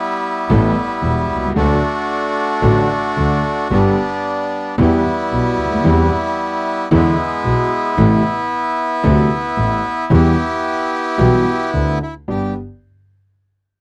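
A dry, close studio sound in a 1970s style puts a reedy, mid-forward bandoneon up front, carrying a nostalgic yet playful tango melody in G major at 112 BPM with a rubato feel, tuned to A4 = 437 Hz. From 0.5 seconds a concert grand piano joins with intimate, boxy accompaniment, deep bass, long sustain and audible action noise, while a single bowed double bass adds a biting, intense line with vibrato and a smooth top. The harmony passes through Em, C/E, E7, Am and D7 before settling on G at 12.3 seconds in this portion of a longer piece.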